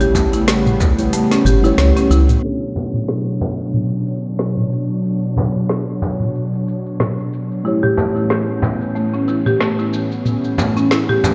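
This short excerpt sounds as if it is played through a big sound system in a bare stone room, with light reverb and a low-pass filter dulling the top end. It is a meditative, gently glowing piece of organic downtempo at 92 BPM in 4/4, swung on the sixteenths and set in B minor, moving from A7 to Bm9 and back to A7. A smooth, warbling analog pad sits up front with vintage 12-bit grit, chorus and sidechain pumping, and a filter sweep runs across it from 2.4 seconds onward. Muted, felt-like synth keys add intimate, dark accompaniment with chorus, delay and pumping, while a buzzing marimba with hardwood bars plays dry, boxy arpeggios through delay, dropping out and returning at 7.6 seconds. A round, woody FM bass anchors the opening until 2.4 seconds, and a deep electronic kick sits in the background briefly at the start. An overdriven afro-pop kit with metallic hats, snare, shaker and toms runs throughout, joined by a small, bright frame drum struck with hard hands.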